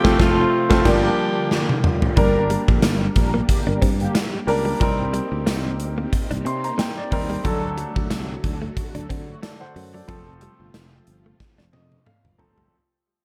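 1980s-style pop with a moody, nostalgic feel, this short cut from a longer piece opens on a band accent, where a raspy, gritty alto saxophone with delay sounds a brief phrase in the background before falling silent at 1.8 seconds. A gated 80s drum kit sits up front with a punchy kick, bright cymbals, snare, toms, hi-hat and tambourine, and its fills mark the turn into the main section and the close. A clear, polished baby grand piano carries the accompaniment and adds its own fills, while a growly fretless electric bass holds down the low end. Behind them, a vintage string machine voicing violas warbles in sustained chords through an ensemble chorus, and a round, detuned synth brass with chorus and phaser punctuates with stabs until 9.4 seconds. From 2.2 seconds a clean, compressed electric guitar plays a picked riff in the background with subtle chorus and delay, as the passage moves from G minor chords toward D and F while fading out.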